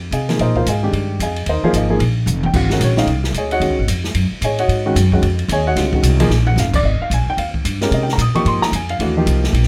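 A woody, thumpy gut-string upright bass sits up front beside a slightly detuned upright piano with short sustain, while a natural-sounding acoustic jazz kit in a small room, with dark cymbals, a medium-tuned snare and a boomy kick, swings at 223 BPM and adds fills at 2.3 and 6.3 seconds, all in a searching, hypnotic modal jazz excerpt that drifts through suspended ninth chords before settling on Abmaj9, captured with close, detailed microphones and light reverb.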